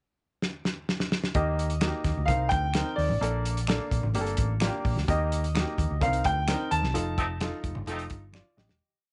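Uptempo 1960s-style soul with a danceable, joyful feel, this short whole piece opens with a drum fill in the pickup bar before the band settles into a pre-chorus from 1.4 seconds. The soul drum kit sits up front with a fat snare, tight kick and hi-hat playing a backbeat groove, its rolled-off top heard in a tight, pumping room. A dark, round hollow-body short-scale electric bass, amped with tube saturation, carries a melodic, syncopated line with chromatic approach notes, while an upright piano adds woody, polished chords in quarter notes with close voicings, grace notes and short fills. Over this, a baby grand piano sings a motif-based melody in song-like phrases with an open, long-sustained tone, and very quiet congas and finger snaps fill in the background, the congas slapping on two and sounding open tones on four. A mellow, vintage horn section with light vibrato and a soft attack punches phrase ends from 7.2 seconds as the band accents the F7 chord during a fade-out that begins at 6.9 seconds.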